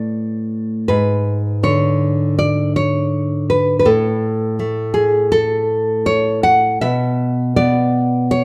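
A solo nylon-string guitar, fingerpicked and up front, carries this tender romantic excerpt for classical guitar, its deep classical tone ranging from G#2 to F#5 with an audible finger squeak. At a rubato 80 BPM in 4/4, tuned to A4 = 443 Hz, the harmony moves from an unchorded opening to a G#dim chord at 0.9 seconds before leaving defined harmony again at 3.9 seconds. A moderate recital hall reverb surrounds the brief 8.4-second passage, which is cut from a longer piece.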